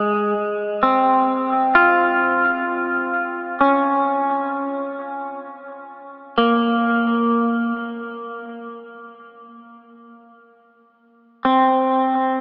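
A lone clean electric guitar, bright and twangy, sits up front from the start of this short ambient fragment, picking out a compressed line colored by analog chorus and tape echo. At 65 BPM in Bb minor, the mood is spacious and melancholic: a Bb minor chord arrives at 3.6 seconds before the harmony falls away again at 7.3 seconds. A huge, wet reverb with a long 7.3-second tail fills the space, while a thin AM-radio sound colors the whole fragment.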